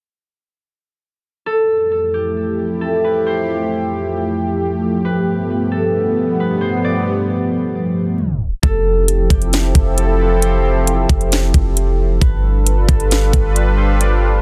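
Dreamy and floating, this atmospheric cloud-rap excerpt moves at 134 BPM in a half-time 4/4 feel in F lydian, opening at 1.5 seconds with a ringing, fingerpicked concert harp melody softened by a low-pass filter and delay over a full-bodied, detuned sawtooth pad that pumps with sidechain and shimmers with chorus across Fmaj7 and G9. After a tape stop at 8.2 seconds, a trap drum kit with a knocking kick, sharp snare and metallic hats arrives up front at 8.6 seconds alongside a deep, boomy, sine-toned 808-style bass. Light reverb surrounds the dense, heavily limited modern master.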